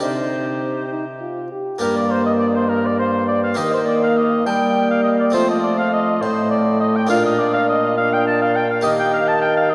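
A mellow cor anglais with light vibrato sits up front in this solemn, courtly renaissance-style consort dance in 6/8 at 68 BPM, joined by a clear trombone and a round, plucked harpsichord on one set of strings as accompaniment, a smooth-topped bassoon on the bass, and a pure, chiffy tenor recorder carrying the melody from the background, the ensemble set in a wet church reverb of 2.7 seconds with a dark, warm production in this short cut from a longer piece.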